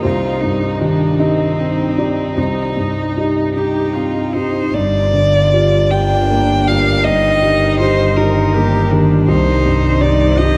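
A vast, echoing cathedral reverb surrounds this short stretch of reflective, longing neoclassical music for piano and strings, flowing in a rubato 6/8. Up front, a felt-muted upright piano gives a soft, intimate, vintage tone with thin felt and audible action noise as it accompanies across a broad range from C2 to Eb5. Over it, a single bowed violin carries the melody with focused vibrato and a smooth top, while one cello adds a clear, even second line beneath. At 4.7 seconds a distant bowed double bass joins on the bass line, and a moment later a very quiet analog pad of detuned sawtooth and triangle tones, with a sub octave and chorus, arrives with a slow attack to hold sustained, mellow chords. The harmony moves from Cm through Gm7 and Eb/G before settling back on Cm.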